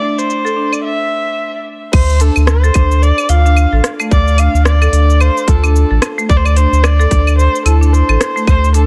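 A dense, heavily limited modern master bathed in digital ambience carries this meditative, hypnotic organic downtempo excerpt in D minor at 110 BPM with swung 16ths, where a dark, bowed kamancheh sings a vibrato- and portamento-laden melody through digital delay over bright, woody hard-mallet marimba arpeggios with delay that move through a filter sweep and a break until 1.9 seconds, when a deep, round, up-front sine sub bass with sidechain pumping and a tight electronic kick arrive beneath crisp, low-pass-filtered hats, claves, shaker, rim clicks and crash from an organic electronic kit, both drum parts overdriven and re-recorded in a small room, as the harmony settles onto C5 at 6.3 seconds.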